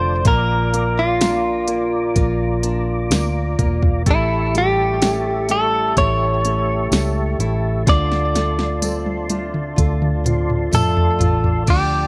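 Melancholic and emotional, this pop ballad fragment, cut from a longer piece, moves in a straight 4/4 through a short progression of Bb, A7 and Dm7. A bright, compressed clean electric guitar, recorded direct and picked, carries the melody up front with tape echo. Beneath it a dark, foam-muted fingered electric bass sits round and punchy, while a mellow, flute-like tonewheel organ holds sustained chords with chorus vibrato and a slow rotary speaker. A deep-toned concert grand piano and a fingerpicked nylon-string guitar with fresh strings add accompaniment and arpeggios in the background, and a jingly, close tambourine joins at 1.2 seconds. The tape-warm smooth R&B kit, with its soft kick, fat snare and smooth hats, plays a drum fill from 7.9 seconds, and digital ambience surrounds the mix.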